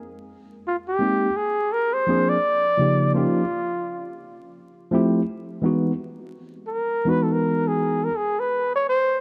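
A breathy, mellow flugelhorn takes the lead from 0.7 seconds, singing a jazz-style solo with vibrato, scooped notes and a smooth top, held up front in this cool, smooth hip hop excerpt at 84 BPM with a swung 16th-note feel. Beneath it, a worn, slightly out-of-tune tine electric piano plays clean accompaniment through its built-in speakers, moving through lush chords like Abmaj9, Eb9 and Emaj9 before stopping at 8.1 seconds. Light reverb and vinyl crackle give the dark production a dusty late-night glow.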